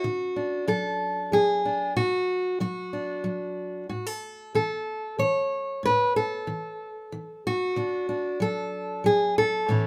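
A fingerpicked steel-string acoustic guitar opens this short, pastoral folk excerpt alone, playing gently in 3/4 at 93 BPM with a straight feel, moving from D to A at 3.9 seconds and back to D at 7.8 seconds, its up-front, concert tone carrying audible finger squeak across a range from A2 to C#5, in a small room with moderate ambience and slightly flat tuning at A4 = 435 Hz.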